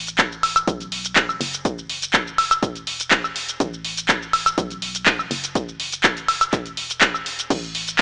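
A punchy analog drum machine sits up front in this euphoric, joyful piano house excerpt, coming in at 0.1 seconds with crash cymbal, handclaps, hi-hat, shaker and woodblock. An electronic kick drum with a punchy analog sound joins at 0.2 seconds, in a straight 4/4 at 123 BPM. Underneath, an organ-like FM bass plays from the very start, moving between E1 and B1 with a hollow, dark tone, a fast attack and a decaying tail. The bass sits well back in the mix and pumps against the sidechain. The whole recording has light reverb and a small-speaker character, and it plays as one continuous section cut from a longer piece.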